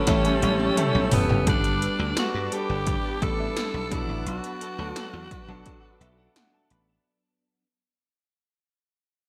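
A raspy, gritty alto saxophone sings a scooped, vibrato-laden melody up front in this romantic, nostalgic 1980s-style pop fragment at 86 BPM, over punchy electronic pad drums with gated reverb on snare and toms, a dry thumbed slap bass, a clear baby grand piano with subtle chorus that adds a fill near 5.7 seconds, a twangy, very quiet twelve-string electric guitar riff and a vintage organ-string pad with phaser in the background, all moving through A7, Gadd9 and Bm7 in a bright digital production that begins fading out at 1.5 seconds after an opening drum fill.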